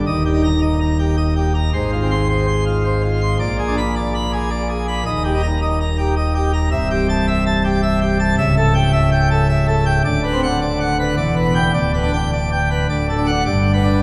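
Majestic and jubilant, this excerpt from a classical organ toccata in 3/4 at 108 BPM sets a solo pipe organ on a full, brilliant plenum with mixtures and baroque voicing, spanning C1 to C6 and standing up front even as a wet church reverb with a 3.7 s decay places the listener further back in the room, while the harmony moves from Eb major through Fm/Ab and Bb7b9 before turning toward G major at 6.7 s and arriving on a G chord at 13.5 s.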